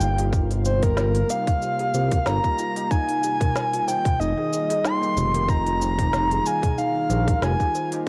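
A breathy, flute-like synth lead with chorus, tape echo and vibrato sits up front in this hypnotic organic downtempo excerpt at 93 BPM in F minor, over a smooth synth bass and a tight electronic kick, with the bass and an ethereal, airy pad both pumping under sidechain, while a very quiet, warbling chord stab, a woody, ringing kalimba with analog delay, an electronic kit of crisp hats, shaker and woody snare, and a small clay darbuka arriving at 3.2 seconds all sit inside a moderate spring reverb and the tape-worn haze of a home cassette recording.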